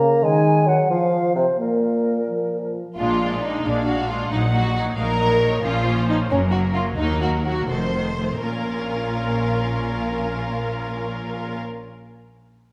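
Urgent and dramatic, this quick classical-period orchestral movement in 6/8 moves with an elastic, rubato feel. It opens with a brief wind-and-brass passage: a mellow, hollow concert flute carries a second line over a dark solo bassoon accompaniment, while a tight French horn section holds soft-edged sustained chords. At 3.0 seconds the strings take over, with a lush, up-front violin section playing a second line while another violin section carries the melody from farther back. Beneath them, intense violas fill in the accompaniment, and a close cello section and woody double basses share the bass. The pace slows from 5.0 to 8.4 seconds as the harmony moves through a dramatic minor-key cadence, and the whole ensemble sits in the wet reverb of a scoring stage.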